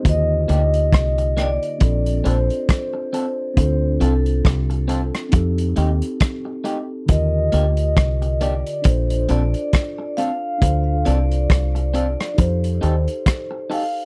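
A mellow tine electric piano with tape echo opens this sweet, romantic lovers rock reggae excerpt in Bb major at 68 BPM, with a lilting 16th-note swing, and a vibraphone played with soft mallets joins at 0.1 seconds to carry the melody, its airy, ringing tone shimmering with slow motor vibrato and its own tape echo. Up front sit a deep, round, foam-muted dub bass and a crunchy, saturated breakbeat kit of kick, hi-hat and rim click with a dark, rolled-off top, while from 0.5 seconds a slightly broken-up electric guitar through a small old amp adds compressed, picked stabs. The dry, close 1970s-style sound cycles through Ebmaj7, Bbmaj9, Dm7 and F9.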